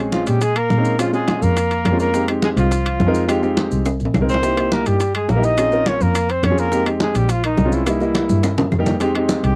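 Piano and bowed double bass open this driving, sophisticated Afro-Cuban jazz excerpt in F minor at 210 BPM, joined at once by a breathy trumpet melody and a warm tenor saxophone second line in the background. Up-front short-sustain piano chords move from Bbm7 through Fm7 to C7#9, with a dark sul tasto bass, ringing timbales, bright damped congas, round low bongos, woody claves and grainy maracas, and drum fills at 3.9 and 8.3 seconds, all in a dry, close 1970s-style studio sound with light reverb.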